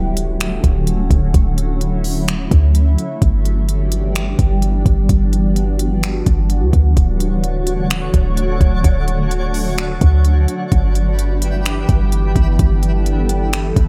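Floating and blissful, this atmospheric cloud-rap excerpt moves at 128 BPM in a half-time feel in D major, with a shimmering, ethereal pad carrying sustained chords through chorus, phaser and sidechain pumping while a deep, boomy 808-style bass holds the low end up front. A soft, smooth R&B drum kit of finger snaps, hi-hat and kick enters at 0.2 seconds, as a barely audible concert harp and a faint electronic impact fall silent within the opening seconds. At 7.3 seconds a twinkling, sparkling granular texture drifts in high above the Dmaj7 and G6 changes, all set in light digital ambience.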